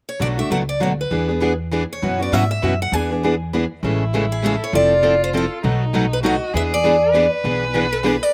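A lead steel-string guitar, boxy and bright with a slapback echo, opens this charming, lively jazz manouche excerpt at a brisk 199 BPM in swung 3/4, joined at once by two picked acoustic guitars carrying the accompaniment over a woody, thumpy pizzicato upright bass on gut strings, and then a distant, bowed violin with vibrato and portamento enters at 3.8 seconds with its own slapback echo, all heard dry in the open air as the chords move from Bm7 to E7.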